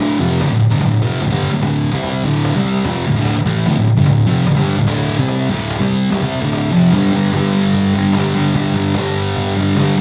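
Heard through a club PA with moderate room reverb, this rowdy, swaggering garage rock clip at 148 BPM in straight 4/4 puts a thick, double-tracked fuzz guitar up front, picking a distorted riff on D5 before moving to G5 at 6.9 seconds. Behind it, a woody, vintage-sounding cajon with faint snares is played with soft hands, its band-limited tone sitting well back in the mix. The short cut comes from a longer piece.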